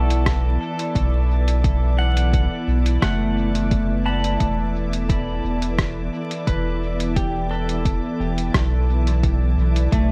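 A calm, organ-like pad with ensemble chorus and pure, full-bodied sustained chords opens this deep, meditative ambient dub excerpt alongside twangy pedal steel arpeggios, played with fingerpicks, slide and volume swells through analog delay, and a round, up-front sub bass, while a muffled, pitched-down sampler kit of hi-hat and rim click soaked in dub echo and a layered electronic kick in the background arrive just after, all set in an echo-heavy mix dusted with vinyl crackle.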